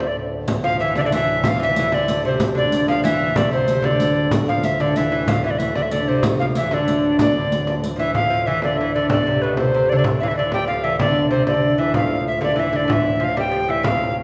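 Heard in the wet bloom of a church or concert hall, this excerpt of a mysterious, driving medieval dance moves at 126 BPM in 6/8, in D minor. An airy, mellow alto recorder with vibrato, a soft, chiffy attack and rolled-off highs carries the melody up front. A bright, delicate fingerpicked lute on doubled nylon strings plays a second line, over the close, dry, breathing drone of a reedy pedal harmonium. A small acoustic frame drum plays throughout, and a softly struck riq adds its jingles from 0.5 s until 8.1 s.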